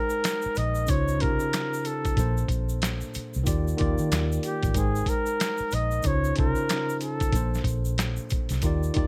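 R&B and neo-soul excerpt at 93 BPM with a relaxed, swung 16th feel, where a breathy, whispered flugelhorn with light vibrato carries the intimate melody up front until 7.6 seconds over a clean tine electric piano playing Abmaj9, Dbmaj9, Bbmaj9 and Ebmaj9 chords, a round, foam-muted vintage bass, a gritty, pitched-down boom bap sampler kit with a thumpy kick, and saturated egg shaker and finger snaps, all set in a small room.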